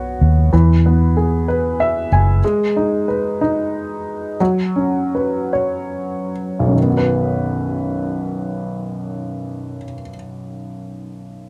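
A dry, close recording with a 1970s studio character and light reverb frames this heartfelt, romantic pop excerpt in B major, moving in a slow 6/8 at 44-64 BPM. A woody, slightly detuned upright piano with audible action noise carries the accompaniment throughout, adding a fill from 1.5 to 2.4 seconds, while a dark, round, foam-muted electric bass sits up front only until 2.4 seconds. The tempo then slows down from 2.4 to 6.8 seconds, as the chords move through G#m and F#sus4 before settling on B.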